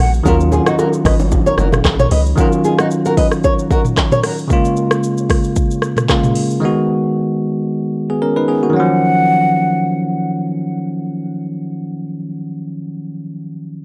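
Afrobeats at 113 BPM in Eb minor, with a smooth, sultry mood and a lightly swung sixteenth-note feel, cut from a longer piece. A bright, bell-like tine electric piano sits up front for the whole stretch, carrying the chords from Ebm9 through Bbm7 and Abm7 and back to Ebm9. A deep, round, dark log drum bass with a fast attack, a decaying tail and a noise layer opens things but drops out by 2.3 seconds, while the electronic afro-pop kit of deep kick, metallic hats, handclaps, rim click, shaker and toms carries a vintage 12-bit sampler grit until 6.6 seconds. A fingerpicked flamenco guitar with fresh strings and audible finger squeak plays a riff through analog delay, and distant congas and bongos add a brief splash of percussion from a large room in the background. After a momentary blip at the very start, a mellow, hollow, airy jazz flute returns at 8.8 seconds with a tongued, straight-toned phrase on Gb5, also treated with analog delay, over a dry, gritty hardware sound with light reverb.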